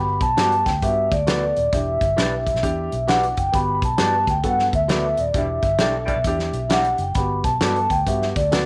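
A vibraphone played with soft mallets carries the melody, its ringing, metallic tone shimmering with a slow motor vibrato and a mellow, vintage, band-limited character. The piece is a short, warm and joyful cut from an uptempo 1960s-style soul tune, swinging in four as the harmony alternates between Gmaj7 and Em7. Beneath the melody, a dark baby grand piano gives intimate accompaniment with audible action noise and short sustain, while a foam-muted fingered electric bass supplies a round, amped low end. A natural country drum kit enters at 0.2 seconds, roomy and up front with a punchy kick and fat snare, and a twangy, slightly broken-up electric guitar adds bright picked stabs in the background from 0.4 seconds. A clear saxophone section with light vibrato slips in a brief jazz-style second line at 5.3 seconds during a band accent, and the whole sits in light reverb and studio ambience.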